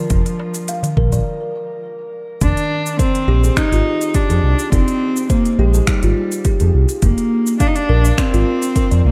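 A dark, bowed cello carries the melody up front in this short excerpt of organic downtempo. Its single vibrato line sits in digital delay and shimmer reverb over an earthy, hypnotic groove in F dorian at 104 BPM, with a light swing on the sixteenths. Beneath it, a smooth gliding synth bass blends sawtooth and triangle tones, sustained with portamento, vibrato and a moving notch; it is the loudest part and sits close in the mix. A woody, hollow kalimba rings out thumb-plucked arpeggios through the same delay and shimmer, while a deep, tape-toned electronic kick anchors the beat, and an overdriven electronic kit adds finger snaps, silky hats and shaker. A crisp metal-shell darbuka, played with soft hands, appears briefly in the background near the start, a break arrives at 1.3 s, and the harmony moves from Bb/F to Fm9 at 2.4 s before returning to Bb/F, inside a shadowy production bathed in digital ambience.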